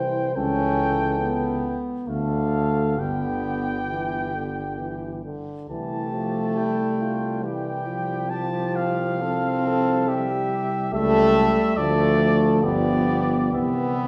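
Set in a reverberant recital hall or church, this classical brass quintet passage unfolds in a triumphant, unhurried triple metre with flexible, rubato timing. A trumpet with soft attack and light vibrato carries the melody over a mellow flugelhorn second line, while a euphonium sits in the background and a velvety bass trombone with vibrato holds the bass up front. A round-toned French horn joins the accompaniment at 0.4 s, and the harmony moves through a gently cadencing progression that returns home to C at 13.5 s.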